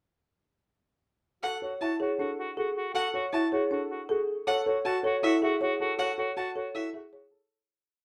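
At 1.4 seconds, this short, bright and hypnotic minimalist classical piece opens in D lydian at 158 BPM in a straight 4/4. A dark, boxy grand piano carries the melody as a repeated short cell, and a focused, bowed violin with vibrato cycles through arpeggios of its own, sounding somewhat distant despite sitting up front. A mellow, vintage-toned soprano saxophone adds a second line on F#4 in a classical style, its light-vibrato notes pulsing, swelling and fading. At 1.8 seconds a folk marimba joins with soft mallets on hardwood bars, its woody, rustic, round arpeggios repeating a short cell of their own. The harmony moves from Dmaj9 to F#madd9, all set in a moderate large studio reverb, and the piece fades out from 6.0 seconds.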